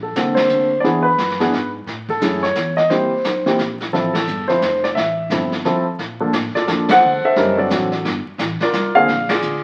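A polished, up-front grand piano carries the melody over woody pizzicato upright bass from the first moment, with a brushed jazz kit of dark cymbals and boomy kick joining at 0.2 s, in this relaxed, warm jazz piano trio fragment cut from a longer piece, swinging in 3/4 at 175 BPM through shared band accents and a new section at 6.0 s, all heard through a wet studio reverb and the crackle of a very old 78 rpm record.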